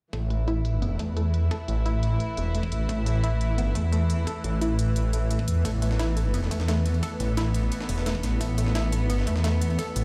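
From 0.1 seconds this mechanical, aggressive dark technical drum and bass excerpt at 174 BPM opens on an A5 chord, with a snarling, growling distorted saw bass up front, intimate bowed chamber strings holding sustained chords, and a round, wave-folded analog pluck tracing arpeggios through chorus, tape echo and a filter sweep, all three pumping against the sidechain, over crisp tape-toned electronic hi-hats and a knocking kick sitting in the background, until a gritty, pitched-up, overdriven jungle sampler-style kit of snare, hi-hat and ride joins at 5.7 seconds, the whole mix ringing as if played on a big sound system in a bare stone room.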